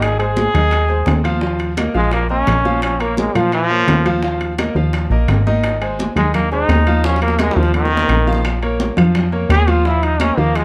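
This short excerpt from a longer piece has a dark, warm production in a large studio with moderate reverb, carrying a driving, danceable salsa at 171 BPM in 4/4. A brilliant, punchy trombone sits up front with a light vibrato, taking a solo across the whole 10.6 seconds over a cycle of Ab, Ebsus2 and Bbm chords. Beneath it, a bright grand piano with audible action noise plays accompaniment, while a plucky analog bass, funky and detuned with a filter pluck and fast attack, holds the low end up front. The percussion stays in the background: high-tuned congas with a thin skin, low-tuned round bongos that sound distant, and ringing metal-shell timbales. A drum fill arrives between 7.0 and 8.4 seconds, and very quiet woody claves join at 8.5 seconds.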